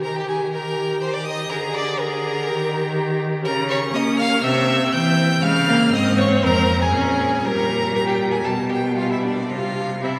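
The first violin carries the melody high above the ensemble with a rich, expressive tone, singing vibrato and sliding portamento, heard from a distance in a cathedral-like space with a long, wet reverb. Below it, the second violin adds a focused counter-line, the viola supplies smooth, even accompaniment and the cello anchors the bass with a clear voice that sits up front. It is a quick, dramatic and urgent classical-period movement for string quartet at 120 BPM in 4/4, played with rubato, with harmony that moves from Eb through Db and Gm/Bb to close on C in this cut from a longer piece.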